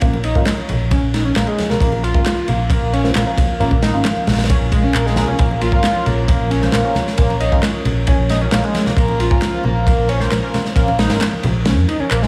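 A gritty, saturated small-room sound with light reverb frames this funky breakbeat piece, a 12-second cut from a longer track that sits in Bb minor at 134 BPM in a straight 4/4. Up front, a crunchy acoustic breakbeat kit pairs a punchy kick and medium-tuned snare with dark cymbals and a rolled-off top, while layered, tape-warm electronic handclaps sit in the background and close, dry congas ring very quietly beneath. A round, amped fingered electric bass anchors the low end on a Bbm chord. An overdriven, guitar-like synth lead plays a screaming, full-bodied riff with vibrato, subtle chorus and dub echo. Behind it, a nasal, band-passed chord stab with phaser and dub echo carries a filter sweep throughout and stops at 11.2 seconds, and a deep, moody analog pad holds sustained chords with chorus and sidechain pumping. The kick drops out at 11.7 seconds for the closing moments.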